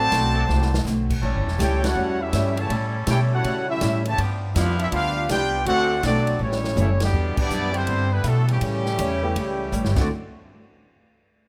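A clear, up-front trumpet section carries the melody in this energetic, joyful big band swing excerpt, with a brilliant, tight trombone section on a second line and a woody, thumpy pizzicato upright bass underneath. A swinging drum kit with dark cymbals, a medium-tuned snare and a punchy kick adds fills, while a boxy picked steel-string acoustic guitar sits in the background and a muted trombone section holds nasal straight-mute chords with light vibrato from 0.4 to 6.4 seconds. A concert grand piano with deep bass enters at 9.2 seconds, and the band is heard through close, detailed microphones with light reverb.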